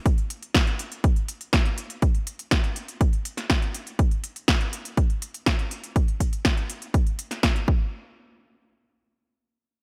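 Uplifting and expansive, this progressive house fragment, cut from a longer piece, runs in a straight 4/4 and pairs an up-front, layered electronic kick drum with a big-room dance drum kit whose punchy snare, crisp hi-hats and tape-warm tone carry the sound of a large room, the two parts starting at 0.1 seconds before the kit stops at 7.7 seconds and the kick at 7.8 seconds, all set in a dry mix with little reverb.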